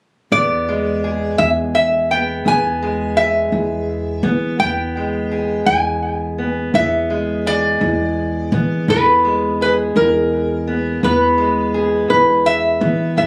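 Swaggering and rollicking, this short excerpt of acoustic country blues in E major rolls along at 56 BPM in a straight 12/8, with a bright, nasal metal-body resonator slide guitar carrying the melody through tape echo, played with fingerpicks, over a boxy, dark parlour-style fingerpicked steel-string acoustic guitar and a thumpy, woody pizzicato upright bass, all three up front from 0.3 to 13.3 seconds in a light reverb that sounds captured on a phone in the room.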